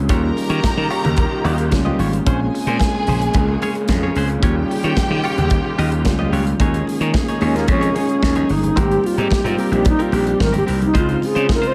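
A growly, overdriven slap bass sits up front in this glamorous, danceable disco passage, joined by a punchy acoustic drum kit with gated reverb, very quiet vintage congas, a twangy, compressed clean electric guitar with phaser, and a worn, slightly out-of-tune tine electric piano in the background. Dark, woody strings hold sustained chords throughout, while a lush, distant violin section carries a second line until 6.3 s. At 7.4 s a bright, reedy alto flute enters close-miked for a solo, its airy, tongued straight tone set in a small room ambience.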